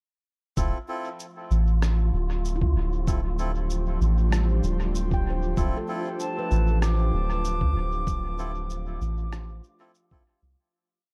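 A muffled, thumpy electronic kick and a sparse, echoing shaker and rim click set a soft 96 BPM groove in this deep, meditative ambient dub piece in D dorian, where a round sub bass sits up front beneath an airy, chorused pad that fades in on a Dm9 chord, reedy melodica stabs ring through dub echo, a dark wind-like noise texture holds a high note, a mellow handpan drifts in slow loops of unequal length in the background from 2.6 s, and a pure, distant flute adds call phrases with analog delay from 6.2 s before the whole piece fades out from 7.2 s.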